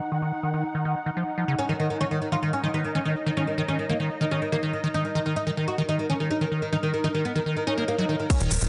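A squelchy, resonant acid bass riff with a filter sweep pumps under a swarming, detuned, gritty drone and a woody, fretless oud melody with phaser and delay in this alien, hypnotic psychedelic trance excerpt at 143 BPM in Eb minor, as a background swell enters at 7.6 seconds before a tight kick, crisp hats and a grainy shaker arrive at 8.3 seconds, joined by a punchy sequencer bass at 8.4 seconds.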